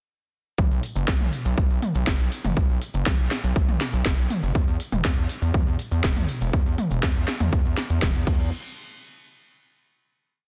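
From 0.6 seconds, a four-on-the-floor kick at 121 BPM, overdriven and punchy, drives this dark, hypnotic melodic techno piece, joined at once by a gritty, resonant sequenced sixteenth-note synth bass pumping under sidechain and a tape-warm electronic kit of cracking snare backbeat, smooth hats, shaker, toms and crash that likewise pumps, all dry and densely limited until the drop gives way to a final hit at 8.5 seconds.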